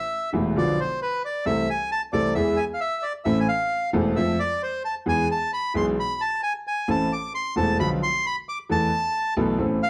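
A reedy, airy bandoneon opens this dramatic, tense tango fragment, carrying the melody high and up front in A harmonic minor at 133 BPM with a rubato feel. At 0.3 seconds a boxy grand piano with long sustain enters beneath it, also up front, spanning deep bass to the middle register as the harmony moves through Am, Bdim, E and F before settling on Esus4. Moderate studio reverb and a dark production give the short passage a brooding, close atmosphere.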